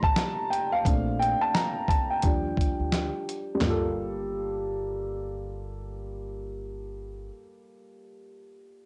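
Hazy and reflective, this lo-fi hip hop excerpt moves at 87 BPM in G minor with a swung 16th-note feel, drifting through Am7b5, Bbmaj9 and Ebmaj7 before settling on Gm9. An up-front, dark, mellow upright piano with a cassette-tape tint plays a solo until 3.6 seconds. Beneath it sit a woody pizzicato upright bass and a gritty, compressed sampler-style drum kit with a thumpy kick, a medium-tuned snare, handclaps, hi-hat and toms. The drums drop out at 3.8 seconds, and the piano carries on alone once the bass ends at 7.3 seconds, framed by light reverb on a home cassette recording.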